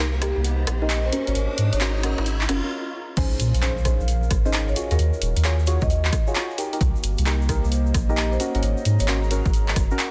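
UK garage in a two-step style at 132 BPM with a swung groove and a soulful, moody air: this excerpt opens on a build-up where an electronic riser climbs and dark, deep chord stabs, coloured by chorus, phaser, cassette tape and delay, move through a filter sweep over a sustained, round sub bass and a warbling, nostalgic pad tinged with lo-fi detuning. After a short stop at 2.7 seconds, the drop lands at 3.2 seconds with an impact, bringing in a grainy egg shaker to join the punchy analog kick and a drum machine of crash, handclaps, hi-hat and rim click, both of which have been playing since just after the start. A mallet-struck marimba melody with digital delay sits in the background over chords that shift from Cm7 and Ab9sus4 to Bbm11 and Ebm11, all within a dense, heavily limited mix carrying light reverb.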